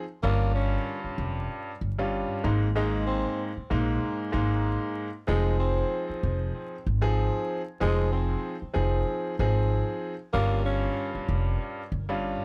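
Hip hop with a dark, gritty, swung feel, this short cut from a longer piece opens on a clear upright piano at 0.0 s, its woody action noise audible and its chords ringing with long sustain as they move from a rootless Bbm6 through Absus2 to Fm7. A growling tenor saxophone carries the solo melody from 0.2 s, breathy and raspy with subtone, vibrato and scooped notes trailed by tape echo, while a thumpy pizzicato upright bass sits up front with tube saturation. The dry hardware recording carries a layer of vinyl crackle.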